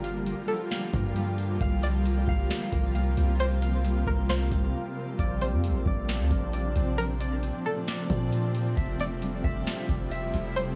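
From the opening second, a booming analog drum machine with a deep kick, crisp snare and metallic hats sits up front beside a long, mellow 808-style sine bass in this hazy, ethereal cloud-rap excerpt at 134 BPM in a half-time feel. Around them, a shimmering, detuned ambient pad pumps against the beat under chorus and reverb, and a twangy string-like resonator pluck carries the melody through chorus and dub echo. A ringing, fingerpicked concert harp plays arpeggios into dub echo, while a reversed, dreamy swelling texture sits in the background. The chords move from Gm7 through C7sus4 to Bbmaj9 and Fmaj9 around a brief break at 4.7 seconds, all within an echo-heavy mix.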